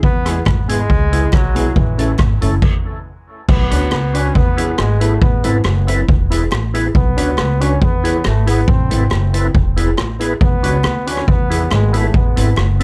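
A bright, distant trombone carries the melody with dub echo over an upbeat, cheerful 139 BPM ska groove in E mixolydian, backed by a woody, growly pizzicato upright bass and a boomy, dark-cymbaled street-band drum kit up front, fat, lightly overdriven tonewheel organ stabs with key click, chorus vibrato, slow rotary speaker and dub echo, a mellow, clean fingered electric guitar with analog chorus and hollow group handclaps in the background, with a brief stop at 2.6 seconds before the band returns at 3.5 seconds in this light-reverb excerpt from a longer piece.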